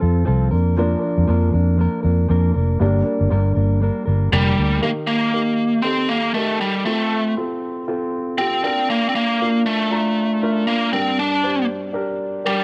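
Driving and earnest, this swung pop excerpt, recorded at home on cassette in a booth, opens with a polished baby grand piano solo over a dark, clean, compressed electric guitar riff and a round, foam-muted fingered bass up front, until a biting, overdriven picked lead guitar takes the melody at 4.3 s and the riff and bass stop at 4.8 s, leaving the piano's accompaniment beneath the lead.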